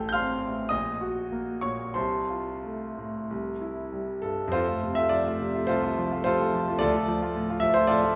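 Flexible rubato phrasing in four moves through this short, passionate and warm romantic character piece for solo piano, cut from a longer work. The concert grand sounds clear, smooth and slightly vintage, sitting up front with a deep bass and spanning A1 to G6, while a lush recital-hall reverb surrounds it. A new section begins at 4.5 seconds, and the passage runs to 8.2 seconds.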